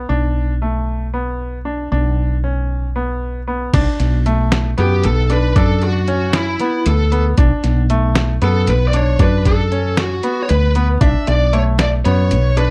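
Intricate and tense, this progressive instrumental excerpt moves in 7/8 at 231 BPM counted in eighths, settling on B minor before shifting to Bm7. A brilliant, short-sustained grand piano spins arpeggios over a woody fretless bass bathed in lush chorus, and at 3.7 seconds a muffled, pitched-down sampler-style drum kit with a thumpy kick and medium-tuned snare joins up front. At 4.8 seconds a dark, picked, bluesy lead guitar with distortion takes the melody, all captured in a dry, close 1970s-style studio sound with lossy compression artefacts.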